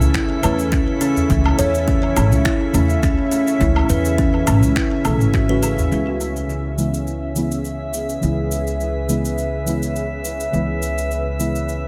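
An echo-heavy, lightly reverberant mix carries this hypnotic, earthy organic downtempo fragment in C# minor at 104 BPM, with a gentle 16th-note swing and harmony moving from A to C#m7. A woody pizzicato upright bass, a deep, warbling chord stab with chorus, sidechain pumping and tape echo, a tense, detuned bowed-like drone with vibrato, a glassy, drifting glass-harmonics texture and tape-warm electronic cabasa, finger snaps and woodblock run throughout. A bright, ringing kalimba plays arpeggios until about 5.7 seconds and a deep electronic kick drives the groove until about 5.5 seconds, while a small, saturated udu sits in the background from 1.2 seconds to 5.9 seconds.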